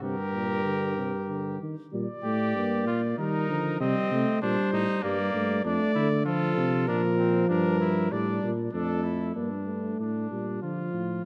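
In a straight 3/4 at 96 BPM, this lively, stately classical canzona for brass ensemble in G minor is cut from a longer piece, with its harmony moving through E-flat, C minor and D minor before returning to G minor. A soft-attacked, warm cornet carries the melody until 9.3 s, over a clear trumpet on the second line and a dark euphonium in the accompaniment. A roomy, up-front tuba anchors the bass, and all four brass parts sit in a moderate scoring-stage reverb.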